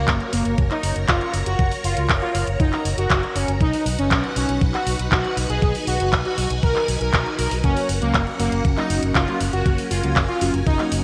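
A bold, nasal analog synth brass carries the melody up front with chorus, delay and vibrato, over a lush string machine ensemble of sustained chords treated with phaser and ensemble chorus, in this romantic, sunny italo disco excerpt at 119 BPM in F# major. A punchy fingered electric bass with an envelope filter drives the low end, while a thumpy, tape-warm electronic kick recorded in a large room and a layered house kit of handclaps and bright hi-hats with gated reverb keep a straight 4/4 pulse through a simple F#, B, F# progression. A dark, clean electric guitar enters in the background at 7.6 s with stabs, all framed by bright 1980s-style digital production and a plate reverb.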